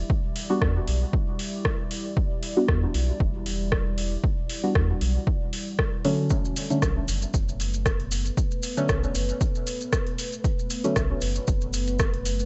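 A dry mix with its top end rolled off carries this deep, meditative dub techno excerpt, gently swung on sixteenths and moving from Em7 to Bm7 at 6.3 s. An overdriven, punchy electronic kick sits up front over a round, soft sub bass, while a tape-hazed vintage rhythm box ticks out metallic hi-hats and rim clicks that sound as if heard in a large room. A nasal, full-bodied chord stab treated with chorus, phaser and dub echo pumps alongside a moody, detuned ambient pad with a slow attack, and grainy, close maracas join at 6.3 s.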